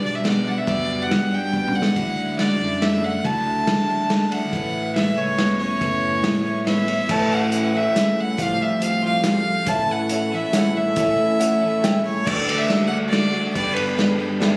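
Fiddle, twelve-string acoustic and electric guitars and fingered bass open this hopeful, jangly folk-rock and heartland-rock excerpt at 140 BPM in 3/4 and D major, with a clear, earthy bowed fiddle carrying the melody up front over shimmering octave-doubled acoustic picking and a twangy electric riff, a muffled vintage drum kit with a punchy kick and a drum fill at 1.5 seconds, a dark, worn upright piano entering at 7.1 seconds, and a very quiet tonewheel organ with slow rotary swirl joining at 9.7 seconds, all heard through club reverb as if captured on a phone in the room.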